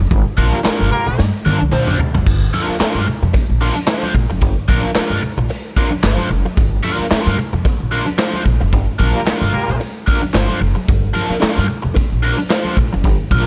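A crunchy overdriven electric guitar with wah sits up front in this hypnotic, sly funk cut, picking a warm accompaniment in its middle register over a Gm7 chord in G minor. It moves at 111 BPM in 4/4, with a light swing on the sixteenths. A raw garage drum kit drives it with a punchy kick, a medium-tuned snare, hi-hat, toms, crash cymbal and handclaps, all saturated and pumping in a bright stone room, with a fill at 1.2 seconds. A woody pizzicato upright bass on steel strings holds the low end. Close, hard-handed congas sit in the background, and a very quiet, hollow group handclap sounds from a small room. A vintage horn section with light vibrato and octave doubling enters up front at 0.5 and 9.1 seconds, within a dark, dry production cut from a longer piece.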